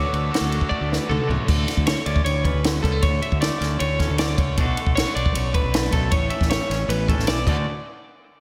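An intricate, playful burst of math rock and midwest emo opens on a Dmaj7 chord, with a soft-malleted glockenspiel ringing a dark, bell-like melody in the background, touched by slapback echo and digital delay, until 1.1 seconds. Underneath, a clean, twangy electric guitar plays accompaniment through the whole excerpt, while a compressed twelve-string electric guitar spins bright, shimmering arpeggios through digital delay. A double-tracked, scooped overdriven guitar riff fills the opening stretch and drops out at 1.5 seconds, just as a drum fill closes it and the harmony shifts to a bare D5 before moving through Bm7 and A7 back to Dmaj7. A growly, fuzz-drenched fingered bass anchors the low end, and the compact cocktail kit sits up front with a punchy kick, high-tuned snare and dark cymbals, adding another fill near the close. The dry, natural drums contrast with the moderate stage reverb that gives the mix a big arena sound, and the fragment breaks off at 7.7 seconds.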